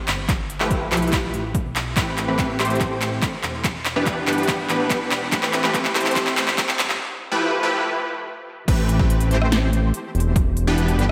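A punchy, detuned supersaw stab leads this bittersweet, emotional future bass fragment in half-time, its chorused, tape-echoed riff pumping against the sidechain while a filter sweep runs through the build-up over chords moving among G13, Am9 and Em7. A fat, saturated analog bass pumps underneath, and an overdriven big-room dance kit with crisp hats, handclaps and a punchy snare plays a drum fill up to a break at 7.0 seconds, joined by a layered electronic kick. The drop lands at 8.7 seconds in a dreamy mix soaked in lush hall reverb.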